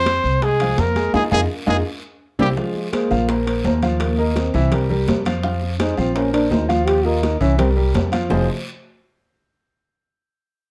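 A sultry, driving Afro-Cuban jazz excerpt opens with a present, vibrato-laden trumpet melody over a breathy second line from the trombone and a woody, up-front pizzicato upright bass, joined at once by smooth vintage grand piano, damped background congas, ringing metal-shell timbales, raspy guiro and very quiet, tight bongos; during a band accent and a drum fill the trumpet stops at 2.5 seconds, and the dark, scooping trombone takes a close-miked solo from 2.6 to 8.3 seconds in a lightly reverberant production.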